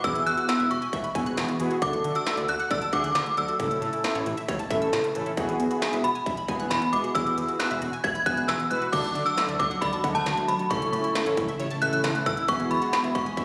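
Synth-pop in a straight 4/4, this bright, wistful excerpt cut from a longer piece circles through Eadd9, D and A. Up front, an FM synth chime carries the melody high in its range with a ringing, inharmonic, warbling tone, colored by ensemble chorus, tremolo and tape echo. Beneath it, nasal, brassy analog synth brass sustains the accompaniment with chorus and vibrato, while a round, detuned analog pluck spins arpeggios across a broad span through chorus and tape echo. A thick, sawtooth analog bass with an evolving filter sweep anchors the low end, and an electronic industrial kit adds a distorted kick, clanging snare, smooth hi-hats and crash cymbal. At 8.9 seconds a lush, vintage string machine enters in the background with soft-attack sustained chords and ensemble chorus. The whole sounds as if captured on a phone in a reverberant recital hall, with added studio reverb and compression.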